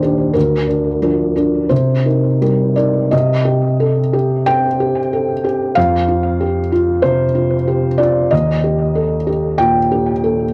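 Melancholic and reflective, this fragment of a longer neoclassical minimalist piano piece in C dorian drifts at a rubato 83-95 BPM in 4/4, as a solo felt-muted upright piano, thick-felted, dark and intimate with audible action noise and a touch of analog delay, sits up front in a moderate studio ambience on a vintage home cassette recording, moving from Bb/D and Cm7 into a second passage at 3.1 s that settles through Cm, F5 and Eb.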